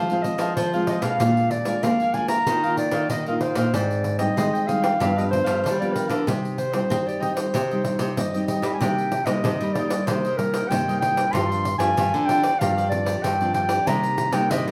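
A straight 4/4 samba and choro groove is driven by a jingly pandeiro from 0.1 s, while a thumb-plucked nylon-string guitar carries the bass and a second, fingerpicked nylon-string guitar fills in the harmony. Up front, a mellow, smooth-topped clarinet sings a bittersweet, nostalgic solo melody in classical style, with a crisp, picked cavaquinho sitting in the background. The chords move from Fm through Bb7, Ebsus2, Abmaj7 and G7 to Cm before a new section begins at 8.8 s on Cm7, all heard from further back in a room with a wet studio reverb, in a passage cut from a longer piece.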